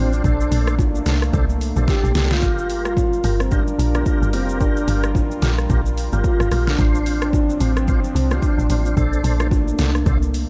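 The sound is dry and close, with a round, dark log drum bass and a deep, layered electronic drum kit sitting up front in this hypnotic, late-night amapiano excerpt with a gentle swing. A breathy, flute-like synth lead carries the melody over the whole clip, its soft tone colored by chorus, tremolo, vibrato and a digital delay. Behind it, a smooth, detuned analog pad holds sustained chords that pump with sidechain compression, while a full, clean tonewheel organ adds stabs through a slow rotary speaker, chorus vibrato and delay. Bright congas and bongos played with hard hands sit very quietly in the distance, as if in a large room. A drum fill arrives at 1.9 seconds, and the harmony moves from Bbmaj9 to Gm7 and Dm7/A before returning to Bbmaj9 at 9.0 seconds.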